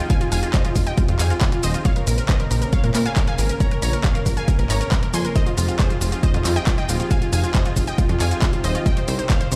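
Soaring and bittersweet, this uplifting trance clip in F minor at 137 BPM sets a bright, detuned unison pluck melody with tape echo and cassette-tape coloring over a silky, chorused analog string pad in the background, joined by an up-front punchy electronic kick, analog drum-machine handclaps, hi-hat and shaker, and a funky sawtooth bass entering at 0.3 seconds, with sidechain pumping on the pluck, pad, bass and drum-machine parts, a barely audible downlifter heard only in the first 1.9 seconds, and chords moving from Fm7 to Bbmadd9 and back to Fm7 before a closing Cm7, the mix sounding as if played on a big sound system in a bare stone room.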